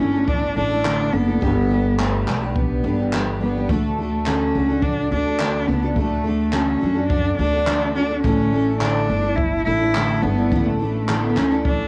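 A bowed cello carries the melody up front, its nasal, boxy tone shaded with vibrato, cassette-tape color and analog delay, over a double-tracked steel-string acoustic guitar whose full-bodied, picked jumbo sound includes audible finger squeak. This easy-going, carefree acoustic pop excerpt moves at 106 BPM in D major through Asus4, G and D. A woody, thumpy pizzicato upright bass on gut strings and a distant, roomy brush kit with a boomy kick and handclaps, entering at 0.3 seconds, fill out a homespun cassette recording with light reverb.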